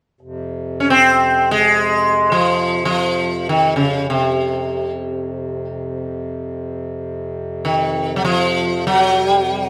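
Unmeasured and in free time, this Indian classical excerpt unfolds in F, in raga Bhairavi, with the instruments tuned to A4 = 438 Hz. A pedal harmonium lays down a low, reedy drone from 0.2 seconds, its breathing, airy tone sitting quietly beneath the music. At 0.8 seconds the sitar enters up front with the melody, its plucked notes buzzing and round, ringing with the shimmer of sympathetic strings. The mood is introspective and full of longing, the sitar's line ranging from C3 to Db4 above the mellow harmonium. A light reverb gives the recording a gentle sense of space.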